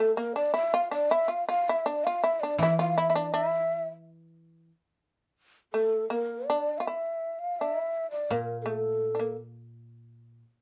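Austere and solitary, this brief excerpt of Japanese chamber music moves in a free, rubato 2/4, with a breathy, mellow shakuhachi carrying the melody up front, its end-blown bamboo tone marked by vibrato, tongued attacks and an audible chiff. Beneath it, a plectrum-plucked shamisen plays a buzzing, percussive second line, while a dry, woody koto adds sparse accompaniment in the low register, entering at 2.6 seconds and returning near 8.3 seconds. Light reverb gives the close, intimate sound a touch of space as the music shifts into a new section around 6.9 seconds.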